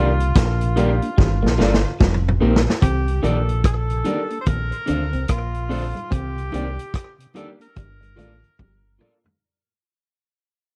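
A dry, close, 1970s-style small-room recording carries this longing, bittersweet lovers rock reggae cut at 73 BPM in C dorian, where a clear, distant tenor saxophone sings the melody through tape echo over a punchy, up-front vintage drum kit with drum fills, a round, dark dub bass, slightly broken-up guitar stabs and a compressed, phased guitar riff, both with slapback echo, a background grand piano, a very quiet flute-like tonewheel organ with key click and ringing hand-struck congas, before the whole piece begins fading out at 2.8 seconds.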